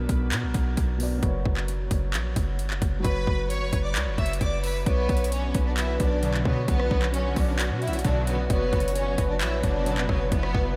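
A half-time trap groove at 132 BPM in B harmonic minor drives this eerie, melancholic hip hop excerpt, where an overdriven kit of hard-clipped kicks, metallic hats, handclaps and rim clicks and a punchy, heavy 808-style bass sit up front beneath a mellow baby grand piano that drops out at 4.9 seconds, as a lush violin section carries the melody from 3.0 seconds, joined by a breathy flute-like synth lead with chorus and tremolo, dark background strings holding sustained chords, and very quiet stabs from a fat, detuned polysynth, all within a dreamy mix soaked in huge reverb.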